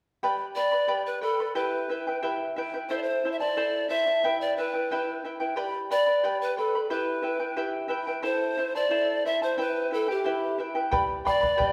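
In a straight 2/4 at 90 BPM, this melancholic, wistful Andean folk excerpt in E minor opens with a shimmering, fingerpicked charango, its double strings carrying the G, Em and Am chords up front, before a breathy, reedy, close-miked pan flute enters at 0.6 s with a tongued, vibrato-laden melody and a round bombo appears at 10.9 s, all within the glow of a wet recital-hall reverb.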